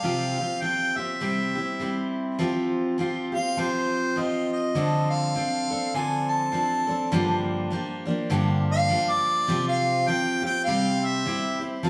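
A gently swung 4/4 at 102 BPM carries this peaceful, nostalgic folk excerpt in F major, where a bright, full-bodied jumbo steel-string acoustic guitar with fresh strings and audible finger squeak picks the accompaniment up front under the chords. A warm, distant harmonica in a classical style holds the melody and takes a solo from 2.4 s to 11.9 s, moving through Fsus2, Dm7 and Gm7 before settling on a Csus4 that resolves to C. The two play live in one large studio, its lush reverb giving the harmonica a roomy glow.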